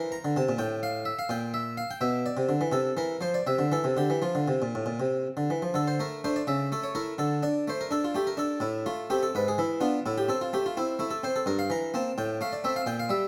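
A solo harpsichord with a round, plucked Italian-style tone on a single set of strings sits up front in this solemn, introspective baroque-style suite movement, played with rubato in 6/8 at about 84 BPM in dotted quarters. It opens in F major and turns to D minor at 5.7 s, ranging from G2 to Bb5 and settling into a brooding A minor colour by the close. The close, detailed miking captures a full, intimate sound against a moderate recital-hall reverb, in a brief fragment cut from a longer piece.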